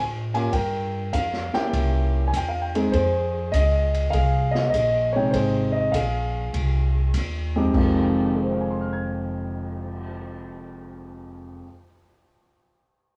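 This home cassette recording has a small-room ambience and light reverb, with a smoky, cool mood. It is a short jazz piano trio passage in F minor, cut from a longer piece, swinging at 100 BPM in 4/4. Up front, a concert grand carries the melody across a broad span from F2 to Ab6, its tone warm and deep in the bass, with a cassette-tape character of its own. A woody pizzicato upright bass on steel strings sits close beside it, holding down the low end from F1 to A2. An acoustic drum kit comes in at 0.3 seconds and stops at 10.0 seconds. It sounds distant and roomy, with dark crash and ride cymbals, hi-hat, a cymbal swell, a medium-tuned snare and a boomy kick, mixed well beneath the other two parts. The harmony opens on a rootless D7 and moves through Gm7 and C7b9 to Fm7, and the piano rings on to 11.9 seconds after the bass has stopped.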